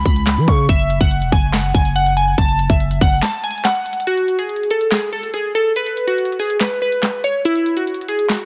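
Glassy digital keys carry the melody up front, their sine-based tone thickened by chorus, softened by a low-pass filter sweep and trailed by tape echo. This is a melancholic, brooding trap and hip hop passage at 142 BPM in a half-time feel, cut from a longer piece and opening on C#m7 before moving to a rootless Eadd9. A growling, buzzy 808-style bass with a fast attack and decaying tail sits prominently beneath the keys until it drops out at 3.2 seconds, leaving a break. The electronic trap kit, with a hard-clipped kick, sharp snare, crisp hi-hats and handclaps, carries a vintage 12-bit sampler grit. The harmony falls away at 4.1 seconds as the second section continues the break over keys and drums. Light reverb surrounds a dense, heavily limited modern master.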